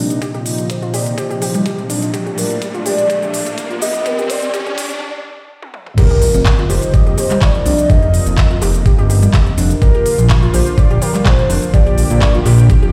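Heard through a big sound system in a bare stone room with light reverb, this bittersweet, dreamy progressive house passage, cut from a longer piece, opens with a build-up in which a velvety, wave-folded synth lead with vibrato and a filter sweep carries the melody over a lush, airy unison pad, a soft, round pluck with vintage 12-bit grit plays arpeggios, an electronic riser starts at 0.5 seconds, and a crisp, tape-toned pop kit of cabasa, handclaps, hi-hat, toms and crash adds fills around an up-front knocking kick, before a brief break gives way at 6.0 seconds to a drop where a fat, detuned, saturated analog bass enters with an electronic impact while the pad, pluck, bass and kit percussion pump against the kick.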